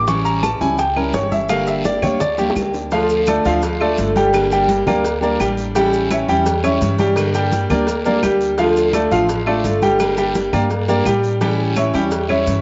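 This danceable, sultry Cuban son and guajira moves at a quick 169 BPM in a straight 4/4, set in D harmonic minor and cut from a longer piece. Up front, a brilliant concert grand piano spins arpeggios with a deep bass register, taking a solo over the opening 2.9 seconds before a drum fill leads into the main groove. A picked dreadnought steel-string guitar plays a bright accompaniment, while a woody, thumpy pizzicato upright bass on gut strings anchors the low end through a cycle of Dm, Gm and A7. Percussion sits in the background from 0.1 seconds: tight, high-tuned bongos and cowbell, damped thin-skinned congas, a raspy saturated guiro and grainy maracas, joined by woody claves at 0.4 seconds. The whole track carries a moderate spring reverb and the dusky, rolled-off top of a home cassette recording, with the piano and guitar bearing a tape tint of their own.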